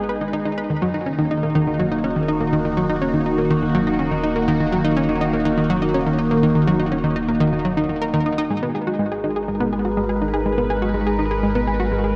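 A straight 4/4 pulse carries this mysterious, hypnotic stretch of ambient, sequencer-driven space music, where a bright, up-front analog pluck riff with chorus and delay rides over a swirling, detuned analog pad of sustained chords treated with phaser and chorus, while a deep sine sub bass fades in beneath, inside a lush hall reverb and a dark production, as the harmony moves from G#m to D#m and returns to G#m at 8.5 seconds.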